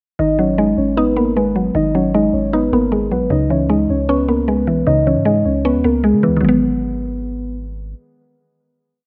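Muted, felt-like synth keys play a looping melody doubled in octaves, alongside a woody, round mallet pluck cycling a rising and falling eighth-note arpeggio and a deep 808-style bass holding long, dark sub-bass notes with pitch slides, all entering together at 0.2 seconds in this eerie, melancholic half-time trap piece. The keys and pluck both carry chorus and sit up front, repeating like sampled loops through the breakdown. The keys drop out at 7.6 seconds and the bass soon after, leaving the pluck alone on the final chord until 9.1 seconds, under light reverb in a rough home-demo mix.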